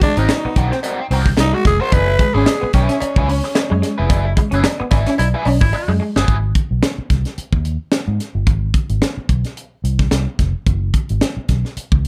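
A growling, raspy tenor saxophone takes a breathy, close-miked solo with scooped notes and tape echo over a gritty, strutting funk groove at 110 BPM with a light sixteenth-note swing, until the band hits an accent at 4.1 seconds. A crunchy overdriven guitar with wah and a lo-fi, slightly broken-up guitar riff fill out the first half, with a metallic cowbell in the background, while a clear, forceful baritone saxophone adds a brief punchy line at 5.2 seconds. A tight drum kit with a high-tuned snare and a round, foam-muted fingered bass drive the dark production through a drum fill into the second half at 6.3 seconds, which the two of them carry to the end.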